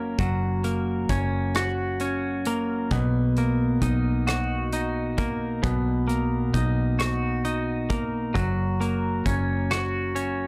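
A slow six-eight pulse at 44 beats per minute, counted in dotted quarters, carries this heartfelt, romantic pop ballad in F# major, cut from a longer piece. Up front, a bright, twangy twelve-string electric guitar plays clean, picked, compressed accompaniment, moving from F# to Bmaj7 at 2.9 seconds and back to F# at 8.4 seconds. Beneath it, a vintage muted fingered electric bass sits low and dark, its foam-muted, amped tone round and punchy. A natural country drum kit enters at 0.2 seconds with hi-hat, rim click and a punchy kick, sounding acoustic in a small room. The whole has a dry, gritty hardware character with transformer saturation and a light touch of reverb.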